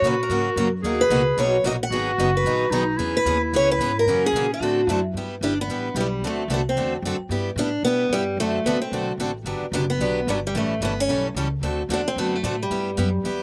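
A charming, lively slice of gypsy jazz swings at 222 BPM, opening in B major with a warm, boxy picked steel-string acoustic guitar carrying the melody up front, a bright, fresh-strung second guitar picking the accompaniment, and a woody, thumpy pizzicato upright bass on gut strings underneath. A breathy jazz clarinet with vibrato and scooped notes adds a clear second line until 5.0 seconds, after which the tune shifts to G major and the two guitars and bass continue. The dry, close sound has little reverb, and the guitars and clarinet carry a slapback echo.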